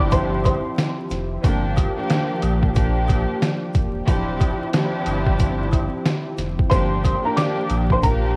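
Boom-bap hip-hop at 91 BPM in D minor, this short cut from a longer piece feels tough and dark, with a 62% swing on the 16ths and a tuning that sits slightly below standard pitch. A compressed, pitched-down sampler-style drum kit sits up front, its thumpy kick, medium-tuned snare and hi-hat carrying a muffled cassette-tape grit, while a saturated sub bass lays down a deep, thick low end. Muted strings played con sordino give veiled, bowed harmony with vibrato, and a smooth analog pad with a slow attack and chorus hangs in the background over the Dm11 and Gm7 changes. A worn, woody upright piano with audible action noise and a slightly detuned character plays brief melodic phrases through analog delay, first at the opening and again from 6.7 seconds. Faint tube shaker, woodblock and handclaps add distant acoustic texture, and the whole mix carries a home-cassette feel with vinyl crackle and a light small-room reverb.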